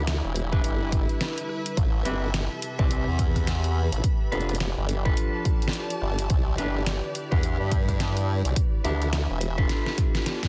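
A formant-sweep wobble bass holds down the low end of this gritty, swaggering glitch hop excerpt at 106 BPM in A minor, its pulse-and-sine tone up front with chorus and tube saturation until it drops out at 9.7 s, while a punchy electronic kick enters at 0.5 s and a dubstep kit adds hi-hat, rim click and a deep snare, with a drum fill closing from 9.7 s. Over a swung 16th-note feel and chords moving from Em7 through Am9, G7 and Cmaj9, a dark, clean picked electric guitar plays stabs with delay and sidechain pumping. Behind them sit a warbling, nostalgic lo-fi pad with chorus, phaser and its own reverb, and a lush bowed string section with vibrato, both pumping under the sidechain in a dense, heavily limited mix tuned to A4 = 436 Hz.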